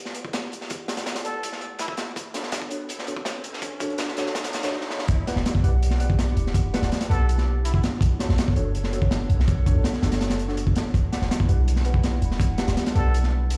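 A crunchy, saturated breakbeat kit with a punchy kick and rolled-off top drives this atmospheric, frenetic drum and bass and jungle cut at 164 BPM in E minor, with a second, gritty breakbeat layer tucked behind it until 4.7 s. Dark, detuned chord stabs with dub echo and a warbling, nostalgic lo-fi pad with vintage sampler grit float in the background, and a plunger-muted jazz trumpet with breathy wah-wah and vibrato drops in brief phrases. A riser and drum fill build to the drop at 5.1 s, where a deep, boomy 808-style bass enters up front, all set in a large reverb with vinyl crackle as if played on a big sound system in a bare room.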